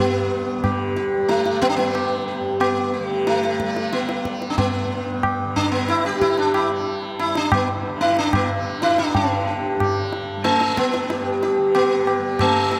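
A bright, plectrum-plucked sitar sits up front and carries the melody between A3 and G4, its sympathetic strings ringing around each note and an analog delay trailing behind it. Beneath it, a softly plucked tanpura holds a warm, buzzing drone from G2 to G3 at a lower level, with a shimmering edge to its sustained tone. The tabla enters at 0.6 s with a high-tuned, ringing sound that stays close and dry against the rest. This serene, devotional Hindustani piece moves at 92 BPM in a straight 7/4, set in G raga bhupali. A vast cathedral reverb soaks the mix in a dreamy haze, and the music shifts into a new section at 9.2 s before this fragment of a longer performance ends at 12.8 s.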